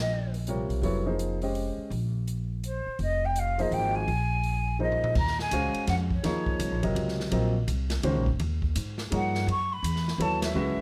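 A swinging three-four pulse drives this hypnotic, cool modal jazz excerpt, where a woody, thumpy pizzicato upright bass and a smooth, vintage baby grand piano sit up front beneath a breathy, hollow flute melody bathed in plate reverb that returns at 2.7 seconds, while an airy big-band drum kit with a punchy kick plays a fill from 4.8 seconds into a new section at 5.2 seconds, moving through suspended and minor ninth chords to a band accent near the close.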